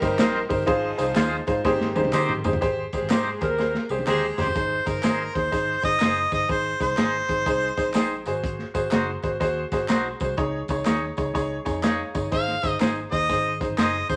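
Uptempo 1960s-style soul in Ab major at 124 BPM, swung in 4/4, with a warm, joyful mood in this short excerpt cut from a longer piece. A crunchy breakbeat kit of hi-hat, kick, snare and toms sounds saturated and gritty with a rolled-off top, a tight kick and a medium-tuned snare, and it drops in fills at 1.6 and 3.6 seconds. Beneath it, a vintage muted fingered electric bass gives round, punchy low notes, while a worn, woody upright piano sits up front, slightly detuned, comping throughout and adding fills of its own. A mellow saxophone section holds a background second line only through the opening 4.4 seconds, and a twangy electric guitar plays clean stabs coloured by harmonic tremolo. From 4.4 seconds a clear harmonica takes the melody up front with light vibrato and scooped, jazz-style notes, returning at 12.3 seconds, while tambourine, tube shaker and group handclaps stay close, dry and in the background. 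The harmony moves from Cm7 and Ab6 through Abmaj7 to Ab, Ab7 and Dbsus2 before settling back on Ab, all in a moderate studio reverb.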